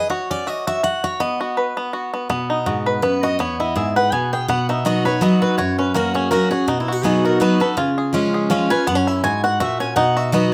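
Rustic and virtuosic, this swung bluegrass passage in triple time, cut from a longer piece, puts a full-bodied jumbo steel-string guitar up front, soloing over its own picked accompaniment beside a twangy, percussive fingerpicked banjo melody that also sits close. At 3.0 s a bright, boxy swing-style acoustic guitar joins with a second melody line, finger squeaks audible, as the chords move through B, E, F# and C# to an F#7 and back to B. Light reverb and close, detailed microphones frame the strings intimately.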